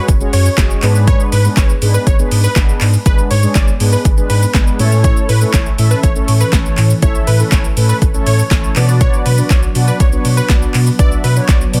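An overdriven deep house drum kit sits up front, its deep kick, punchy snare, metallic hats, handclaps and shaker driving a confident, bittersweet dance-pop groove at 121 BPM in a straight 4/4. Beneath it, a round sine sub bass pumps against the sidechain, while a mellow, dark synth brass built from detuned sawtooth carries the accompaniment with chorus, vibrato and a filter sweep, also breathing with the sidechain. On top, a bright, catchy unison lead plays a melody between B4 and D5, its detuned sawtooth layered with sine and noise and trailed by dub echo. At 6.0 s an ethereal, airy pad enters very quietly with slow-attack sustained chords, softened by ensemble chorus and its own built-in reverb. The harmony moves from F#sus2 through G#dim to A and Bm, tuned to A4 = 438 Hz, and the dry, dense, heavily limited master keeps this passage cut from a longer piece close and forceful.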